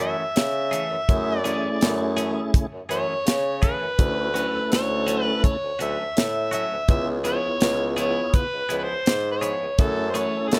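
This straight-eighth soul blues excerpt has a smoky, brooding mood. Up front, a gritty, amplified harmonica carries the jazz-inflected melody, with overdrive and slapback echo, light vibrato, tongue slaps and scooped notes. A clear bassoon plays the bass line with a soft attack and gentle vibrato. Bright, twangy stabs from a clean, compressed electric guitar are colored by phaser and slapback echo, and the guitar stops at 10.4 seconds. A full tonewheel organ enters at 1.1 seconds, lightly overdriven with key click, chorus vibrato and a slow rotary speaker, as the harmony moves from F#m9 through Dmaj7 and C#7#9 back to F#m9. A dry, polished funk drum kit sits prominently with a tight kick, a medium-tuned snare and hi-hat, all set in a studio reverb.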